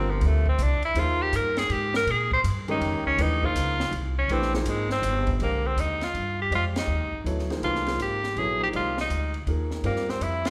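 A bright, forceful tenor saxophone with vintage vibrato opens this cool, searching modal jazz excerpt in a swinging waltz time, soloing up front over warm grand piano chords and a woody, thumpy pizzicato upright bass, with a compact cocktail drum kit joining at 0.2 seconds on dark cymbals, a high-tuned snare and a punchy kick. The harmony drifts through suspended chords before settling onto a minor ninth at 5.4 seconds, where the second section begins, and the band hits an accent at 6.7 seconds. The dry drums and the natural piano sit back while the horn and bass lead, all placed in a moderate recital-hall reverb.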